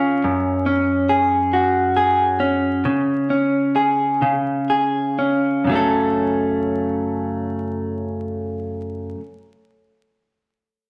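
Pop in F# minor, slow and melancholic in 6/8 at 40-47 BPM, this aching cut features a lone clean electric guitar, picked, compressed and recorded direct, sitting up front with spring reverb as it slows over its first 5.7 seconds through F#sus2 and C#5 before settling on F#m, all set in a large, wet studio reverb with a layer of vinyl crackle.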